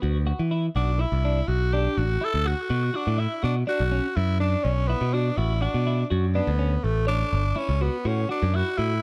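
Brooding and tense, this short progressive instrumental cut moves in a straight 11/8 at 246 BPM in B minor, with a bright, punchy picked electric bass growling up front, a clean, twangy twelve-string electric guitar playing compressed arpeggios, and a raspy, breathy tenor saxophone entering at 0.8 seconds with a gritty solo melody carried by digital delay, all over chords moving from E7(no3) to Bm7 and then A in a dark production with light reverb.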